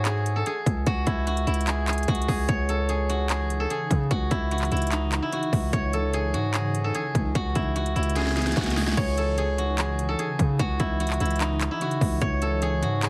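A silvery, fingerpicked steel-string zither rings out over a distorted, aggressive 808-style bass and a trap kit of hard-clipped kicks, sharp snare, metallic hats, handclaps and crash in this dark, menacing half-time hip hop excerpt, with a mellow, ethereal pad joining in the background at 3.4 seconds and a drum fill at 8.2 seconds, all heard through a heavily compressed, radio-like digital ambience with vinyl crackle.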